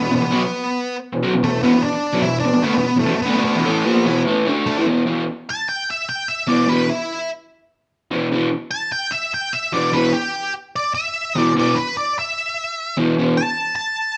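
A dark, fuzz-drenched octave lead guitar sits up front from the start and steps into a distorted solo at 4.9 s, giving this swaggering, menacing rock cut in E minor its snarl at a straight 148 BPM in 4/4. Beneath it, a crunchy, double-tracked overdriven guitar drives the riff from the low register until it drops out at 13.3 s. The pair sound like a band playing live together in a large studio, with a moderate reverb adding depth to the room.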